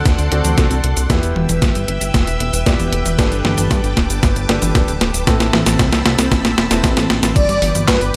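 Overdriven, thumpy electronic kick and an up-front, clean but overdriven 12-bit drum machine with cabasa, handclaps, snare and toms drive this playful, danceable italo disco clip, with a glossy, detuned synth bass, lush sustained string-machine chords, gritty filtered piano stabs with delay, and a round, phased synth brass melody entering at 7.4 seconds.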